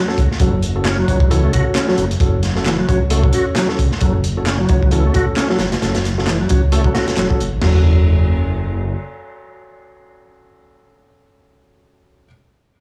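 Gritty and raw, this breakbeat cut from a longer piece runs at 133 BPM in F# minor with a swung sixteenth feel, as a crunchy, saturated drum kit with dark cymbals and a tight kick sits up front beside a thick, menacing detuned saw bass whose filter sweeps through the opening 7.6 seconds. A reedy, lightly overdriven tonewheel organ riff carries key click, chorus vibrato, slow rotary speaker and delay through its own filter sweep, while overdriven electronic handclaps sit layered in the background. Intimate grand piano stabs with audible action noise and delay carry on alone until 12.3 seconds, all within a dry, small-room sound roughened by transformer saturation.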